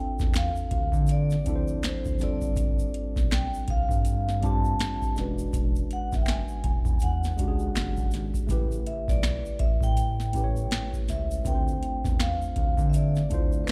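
This sounds like a live club gig heard through the venue's PA, with club reverb around the players, and it is cut from a longer sultry, late-night neo-soul and R&B piece with a lazy swung sixteenth-note feel. A mellow vibraphone with soft mallets carries the melody from the start, its metallic, ringing tone given an airy shimmer by slow motor vibrato and a blend of slapback and tape echo. Beside it, a worn, slightly out-of-tune tine electric piano plays the accompaniment through its built-in speakers, clean in tone and touched with slapback echo. At 0.2 seconds a round, dark analog bass enters, deep and evolving with a sawtooth-and-sine character, a fast attack and sustained notes. It arrives alongside a booming, overdriven drum machine set up front, with a deep kick, crisp snare, metallic hats and finger snaps, plus a close, dry layer of tube shaker and handclaps sitting low in the mix. 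The harmony moves from Dm9 through G9sus4, E13 and A7 before returning to Dm9.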